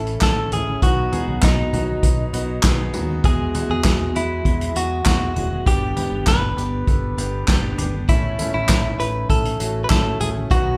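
Hopeful and anthemic, this short cut from a piano-driven pop piece moves in straight 4/4 over a chord cycle of A, B, Eadd9 and G, with the band playing live together in one large studio room. A clean, compressed electric guitar carries the melody, while a clear concert grand with audible action noise and long sustain supplies the accompaniment, a woody dreadnought acoustic guitar on old strings picks a riff in the background, and a dark, round fingered bass anchors the low end. Up front sits a roomy acoustic drum kit played with bundle sticks, its punchy kick, medium-tuned snare, hi-hat, toms and handclaps running from 0.1 to 10.7 seconds.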